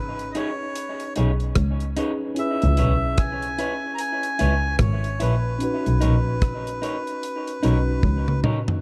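A sweet, smooth lovers rock reggae groove at 74 BPM in B major rides a swung sixteenth feel, with a deep, dry drum kit up front, its tight kick joined by hi-hat, rim click and toms, and a drum fill closing the passage at 8.0 seconds. A bowed double bass with vibrato sits boxy and focused beneath a worn, slightly out-of-tune tine electric piano, lightly overdriven through its built-in speakers, while a dark, slightly broken-up electric guitar picks stabs through tape echo. Over this, a reedy, breathy melodica carries the melody with its own tape echo across chords moving from Amaj9#11 to C#m7 to Bmaj9, in a dark production with light small-room reverb, cut from a longer piece.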